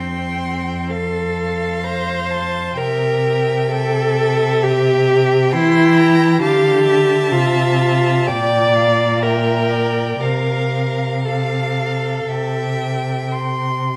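The viola sits up front with a warm, even tone, carrying the accompaniment until 13.3 seconds beneath two focused, rich violins that share the melody and a second line high above. A cello supplies a smooth, even bass with vibrato, all four bowed by single players in a moderate recital hall reverb. This lyrical, serene passage from a slow romantic string quartet movement in F major moves with a rubato feel at about 54-68 BPM, drifting through gentle harmonies before settling on C at its close.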